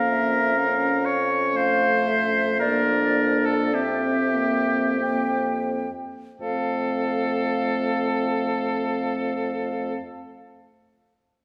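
Warm and lyrical, this slow romantic wind quintet movement in F major unfolds in a rubato 3/4 between 39 and 65 BPM, easing down over its first 6.4 seconds. An airy, distant silver flute with a crisp attack carries the melody above a bright, up-front oboe second line with light vibrato. Beneath them, a soft-attack mellow clarinet and a smooth-topped French horn supply accompaniment over a present bassoon holding F, while the harmony moves from Bbm/F to C7/F before settling on F at 6.4 seconds, all within a wet, reverberant church or concert-hall space in this short excerpt from a longer piece.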